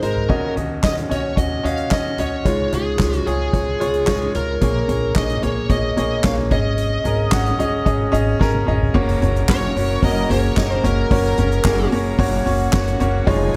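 A bluesy, overdriven electric guitar carries the melody from the opening moment of this piano-driven pop excerpt, picked with a distorted edge over a bright upright piano whose brilliant, up-front tone rings with long sustain and audible action noise. The mood is anthemic and hopeful, set at 111 BPM in a straight 4/4, with the harmony moving through Ebm7, Db, Bbm7 and Absus4 before settling on Gb. Underneath, a pizzicato upright bass adds a woody, growly low end, while a drum kit played with soft mallets brings a boomy kick, a medium-tuned snare, dark cymbals, hi-hat, toms, handclaps and crash. A drum fill at 8.4 seconds leads into a new section at 8.9 seconds, where a rich violin section enters at 9.0 seconds, bowed sul tasto with a soft attack, floating distant and pure in the background. The guitar drops out at 11.9 seconds, leaving piano, bass, drums and strings in a small room with light reverb.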